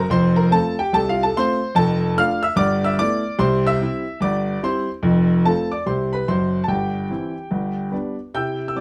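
Stride jazz piano in C major swings playfully at 146 BPM, a solo grand piano covering a broad span from deep bass to high treble across this short 8.8-second excerpt cut from a longer piece. The instrument sounds warm, intimate and up front, with a boxy character and audible action noise, set in a moderate small-room reverb. Its harmony moves from F through Dm/F and G69 to C, returning to F before closing on C/G and G.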